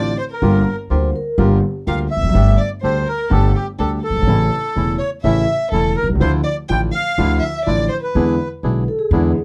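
Tango at 124 BPM in 4/4 with a rubato feel, sultry and tense, from a longer piece: a reedy, airy bandoneon sings the melody over a dark, expressive single violin with portamento, and both stop at 8.5 seconds. An up-front concert grand with deep bass and long sustain and a woody, thumpy pizzicato upright bass on gut strings carry the accompaniment over chords from Gm7 to E7, while a second, vintage-toned, band-limited bandoneon adds stabs. A vibraphone with soft mallets and slow motor vibrato rings out briefly at 0.9 and 8.6 seconds, all within a dry, close 1970s-style studio sound with light reverb.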